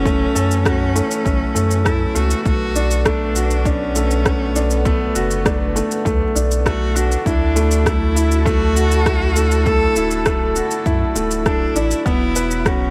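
A lightly reverberant, intimate sound frames this melancholic, hypnotic piano and strings electronica excerpt in B minor at 100 BPM, where a soft, felt-muted upright piano riff with audible action noise and digital delay sits up front over a round sub bass pumped by sidechain, while a rich, smooth cello melody with vibrato and its own delay sings over dark, sul tasto string chords in the background, and a punchy, overdriven electronic kick along with overdriven shaker and rim click enter at 0.1 seconds over chords moving from F#m through Bm7 and Dadd9 to Esus2.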